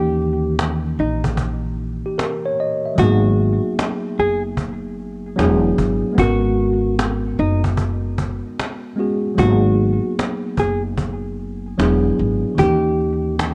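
Lo-fi hip hop in G# minor at 75 BPM, this hazy, nostalgic cut from a longer piece rolls along in 4/4 with a 64% swing on the sixteenths, tuned to A4 = 436 Hz. A dark, compressed hollow-body jazz guitar carries the fingered, clean melody up front, sitting in a narrow band between D#4 and G#4 until it stops at 13.3 seconds. Beneath it, a worn, slightly out-of-tune tine electric piano plays the chords directly and up close, moving through D#7b9, G#m9, E9 and G#m11. A woody pizzicato upright bass on steel strings anchors the low end, and a snappy cajon with snares enters at 0.2 seconds, its live-room sound roughened by vintage 12-bit sampler grit. Small room ambience and a rough, cassette-tape home-demo quality wrap the mix, with the second section arriving at 9.4 seconds as the harmony returns to G#m9 and moves through E9 back to D#7b9.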